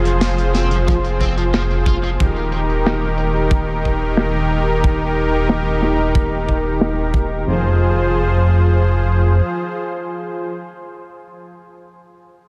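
A straight 4/4 pulse drives this cinematic, nostalgic synthwave excerpt, where a smooth, detuned supersaw holds sustained chords up front over a glossy, chorused synth bass, both pumping with sidechain. A barely audible downlifter sounds at the opening, and a crunchy, overdriven guitar plays a picked, double-tracked riff with ensemble chorus and tape echo in the background until 2.1 s. A background drum kit with low-pass-filtered hi-hat and a medium-tuned snare sits behind a punchy, polished kick that enters at 0.9 s, while filter sweeps run over the drums and bass until 7.5 s, all soaked in a dreamy cathedral reverb.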